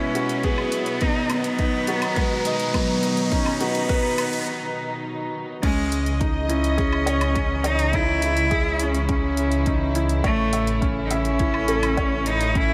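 A clear, up-front cello carries a melancholic, moving melody with vibrato and digital delay over a felt-muted upright piano riff with audible action noise, dark lush string chords, deep house drums with dark hats, and a deep electronic kick in this 104 BPM piano and strings electronica piece in C# minor, where a riser builds until 4.5 seconds, a short break follows, and a rumbling detuned saw bass with sidechain pumping arrives at the drop at 5.6 seconds, all set in a lush hall reverb.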